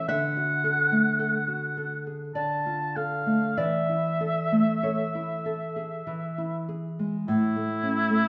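In a slow, rubato 3/4 at 48-56 BPM, this short, serene romantic duo in A major sets a vibrato-rich, punchy oboe melody against a small, thumb-plucked nylon-string guitar accompaniment, both sitting up front. The harmony moves from D to D minor, then through A over E and E before settling on A at 7.3 seconds, where a new section begins. A church-like recital hall reverb with a 1.6-second decay gives the classical-style oboe a roomy, slightly distant glow, and the whole passage is cut from a longer piece.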